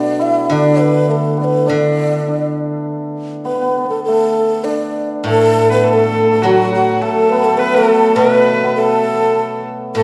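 Festive yet graceful, this excerpt of Chinese traditional chamber music moves at 102 BPM in 2/4 with a loose, rubato feel, tuned slightly high to A4 = 445 Hz. A low bamboo xiao carries the melody up front, its breathy, mellow tone tongued, shaded with vibrato and a little unsteady. Beneath it, a hammered dulcimer plays a shimmering second line close in the mix, while a steel-string zither, played with fingerpicks, lays down a ringing, silvery accompaniment. At 5.3 s, as a new section begins, a horsehead fiddle joins up front as another second line, its clear, nasal, husky bowed tone earthy and boxy, gliding with portamento and light vibrato. A wet recital hall reverb gives the ensemble the spacious resonance of a church or concert hall.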